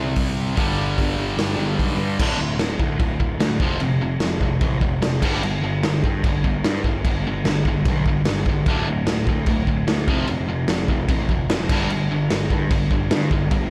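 A double-tracked, overdriven electric guitar riff and a growly, fuzz-drenched picked bass open this upbeat, rebellious punk rock cut in a brief half-time feel, with a raw garage drum kit joining at 0.2 seconds. From 2.2 seconds the straight 4/4 drive kicks in, cycling through D5, F5 and G5 power chords. The drums have a punchy kick, a medium-tuned snare and a rolled-off top, and sit up front beside the bright guitar in a dry mix, before this fragment of a longer piece cuts off at 13.7 seconds.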